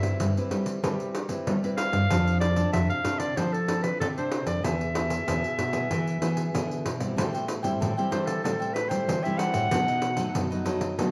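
Bittersweet and yearning, this short cut from a longer samba and choro piece moves in a straight 4/4 feel. A clear, forceful clarinet carries the melody up front with light vibrato and a punchy, vintage jazz-style tone, playing from the start until about 10.7 seconds. Beneath it, two nylon-string guitars share the harmony: one thumb-plucks a full-bodied classical accompaniment, while the other fingerpicks the bass line on fresh strings, with audible finger squeak. A jingly pandeiro, played with soft hands and sitting up front, has a band-limited, old-fashioned character. At 7.2 seconds a crisp, picked cavaquinho joins quietly in the background as the chords pass from Cmaj7/G through F6 and E to Am7 and B7, all heard as a band playing live together in one room, bathed in a large, wet studio reverb.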